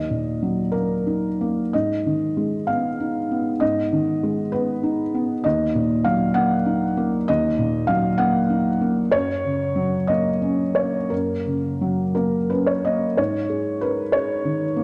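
Moving in a rubato 6/8 at roughly 57-66 BPM counted in dotted quarters, this short excerpt of neoclassical minimalist piano sits in G# dorian, tuned to A4 = 441 Hz, with a melancholic, wistful mood. A solo felt-muted upright piano, soft and intimate with a thick felt tone placed up front, spans D#2 to F#5 and moves through D#m, G#m and F# before settling on G#madd9 as a new section begins at 13.2 seconds. A moderate scoring-stage reverb surrounds the dark production.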